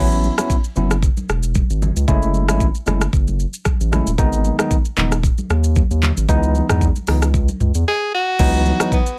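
A lightly swung sixteenth-note groove in 4/4 drives this sultry, smooth afrobeats excerpt, built on an electronic, produced afro-pop drum kit with a knocking kick, warm hi-hats, handclaps, rim clicks, shaker, toms and crash cymbal sitting up front. A deep, thick, saturated sub bass with a fast attack and sustained notes anchors the low end, while a clean tine electric piano, heard as if through built-in speakers, carries the chords from A6 through F#m7, G#m and C#m7 before landing on C#m11. Very quiet acoustic congas, medium-tuned with a thick-skinned tone and a live-room feel, add texture beneath the kit. At 7.9 seconds, as a brief silent gap opens, a breathy tenor saxophone enters with a clear, jazz-style solo voice, using vibrato, subtone and scooped notes, its line trailed by delay. The sound is dry, with little reverb, and the piece is cut from a longer work.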